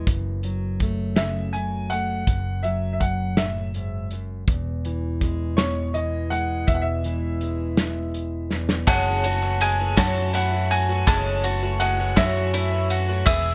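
Hopeful, anthemic indie folk at 55 BPM in a straight 6/8, opening on a full-bodied fingerpicked steel-string acoustic guitar, a round, amped electric bass and a loose, up-front drum kit with a tight kick and a rolled-off top, while a clear, woody upright piano carries the melody from 1.2 seconds over a move from F#m7 to E. After a drum fill, the arrangement builds at 8.9 seconds as a shimmering, octave-doubled twelve-string guitar, bright mandolin arpeggios, a bell-like glockenspiel second line, hollow group handclaps and a jingly tambourine join, the last three sitting in the background. The fingerpicked guitar drops out at 11.1 seconds, and this excerpt, cut from a longer piece, carries little reverb.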